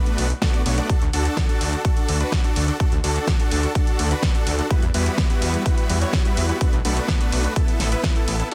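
A huge, euphoric supersaw lead carries the riff in this uplifting, triumphant festival progressive house drop, its bright, detuned sawtooth unison pumping with sidechain and shaded by a low-pass filter and dub echo. Beneath it, a thick, beating detuned saw bass with a saturated, menacing edge pumps in the same way, while a punchy, layered electronic kick sits up front in a small room ambience. The big-room drum kit adds crash cymbal, hi-hat and a huge snare. The kick drops out at 8.1 seconds and the bass at 8.4 seconds, just before the lead and drum kit stop at 8.5 seconds. At 126 BPM in a straight 4/4, the harmony in D major moves through Bm7, D, Emadd9, Bm7 and Asus2. The dense, heavily limited modern master keeps this short cut from a longer track loud and forceful.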